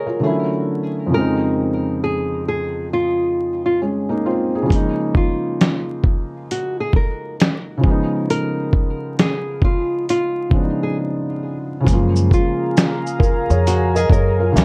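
Dreamy and mellow, this lo-fi hip hop excerpt drifts at 67 BPM in Db major with a swung sixteenth-note feel, cut from a longer piece. A soft, felt-muted upright piano carries the accompaniment from the start, its hammer action faintly audible through cassette-tape coloring and plate reverb, while a fingerpicked nylon-string guitar plays a small, warm melody softened by a low-pass filter, tape echo and plate reverb. A gritty, compressed sampler-style drum kit arrives at 4.7 seconds with a thumpy kick, medium-tuned snare, hi-hat and shaker, sounding as if re-recorded in a small room. After a short break, a woody pizzicato upright bass enters up front at 11.9 seconds as the harmony settles onto Gbmaj9, joined shortly after by a warbling, detuned tape-like pad with a slow attack, chorus and reverb. The overall production is dark and warm, dusted with vinyl crackle and a moderate studio reverb, moving through chords such as Dmaj7, Eb7sus4 and Db7.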